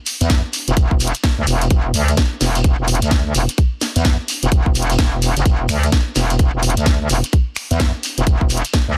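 Bass house with a gritty, swaggering groove and a swung feel, led by an aggressive, saturated wobble bass with metallic FM bite and chorus, pumping against a tight, up-front electronic kick, while a tape-warm garage kit of finger snaps, hi-hat and cracking snare drives the beat and a grainy, mellow shekere sits in the background of a dense, heavily limited mix.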